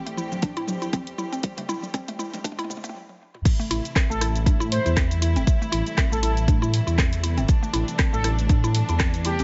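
Hypnotic and earthy afro house cut from a longer piece, where a rumbling, detuned saw bass pumps alongside a deep, up-front electronic kick beneath smooth bowed strings and woody, round mallet-like plucks with tape echo, while swung afro-pop drums with warm hats and cabasa join thick-skinned congas in the background until 2.8 seconds, and after a build-up ending in a stop the drop at 3.5 seconds brings a soft-attack, vibrato-laden synth lead in at 4.1 seconds over a dry, dulled mix.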